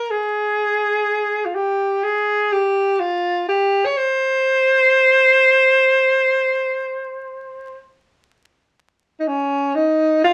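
A breathy alto saxophone opens alone in free time, tracing an Arabic line in the C maqam kurd mode, tuned to A4 = 444 Hz. The mood is hypnotic and soulful, with the horn ranging from Db4 to Db5 in a jazz-inflected style. Its subtone is warm and punchy, with a light vibrato, and it sits up front while still sounding distant and roomy. A small, reverberant room surrounds the horn, and a vinyl crackle adds an aged patina. At 8.8 seconds the phrase turns toward a new section that runs until this brief cut from a longer piece ends at 10.3 seconds.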